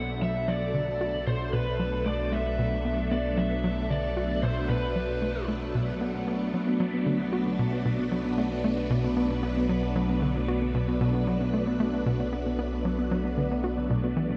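Mysterious and expansive, this sequencer-driven space music in B minor moves at 114 BPM over a single Bm7 chord, with a tight, punchy sawtooth sequencer bass riff driving beneath a swirling, warbling string machine up front, a detuned analog drone, and a warm, overdriven lead guitar melody that drops out at 5.4 seconds, while an airy, breathy wind-like noise texture fades in from 3.8 seconds and soft, round pluck arpeggios with 12-bit sampler grit join at 6.5 seconds, all bathed in a huge ambient reverb.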